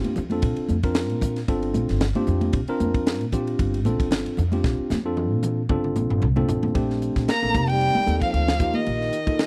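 Slick and bright, this 114 BPM electric jazz fusion excerpt in Bb major swings lightly as a clean tine electric piano, a crisp fusion drum kit with a high-tuned snare and tight kick, background congas with hard hands, and a woody pizzicato upright bass groove together, with a drum fill from 4.6 to 6.8 seconds, before a rich, boxy bowed violin takes the melody at 7.3 seconds over a punchy, mellow trombone second line in a dry, close 1970s-style studio sound.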